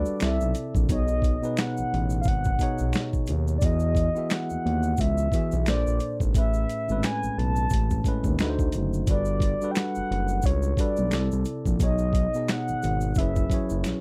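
Relaxed and soulful, this short neo-soul R&B excerpt in B mixolydian moves at 88 BPM with a swung sixteenth feel, driven up front by a gritty, pitched-down boom bap sampler-style kit with a thumpy kick and high-tuned snare, plus a quiet egg shaker and finger snaps recorded in a small room. A smooth, gliding sawtooth synth bass with portamento and vibrato sits forward in the mix, while a clean tine electric piano heard through its built-in speakers comps through lush chords such as Emaj9, Amaj9, D7b9 and Gmaj7. Above them a round, horn-like, detuned synth lead with a warbling vintage chorus and soft attack carries the melody, all in a dry, close 1970s-style studio sound that ends on a drum fill at 13.8 seconds.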